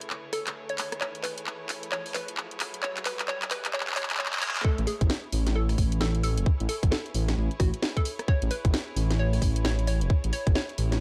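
A hollow, warbling square-wave pluck carries the melody of this sunny, bouncy two-step garage cut, its vintage tone thickened by chorus and tape echo over an Amaj7 bed of sustained chamber violins, rich and biting, that pump under sidechain and a low-pass filter. A garage kit of cracking snare, handclaps, hi-hat and rim click runs a drum fill through the build-up while a riser and reverse cymbal rise toward the drop at 4.6 seconds, where a tight, up-front electronic kick arrives, followed a moment later by a deep, rumbling detuned saw bass. The whole piece carries a dry, gritty cassette character with digital ambience, cut from a longer track.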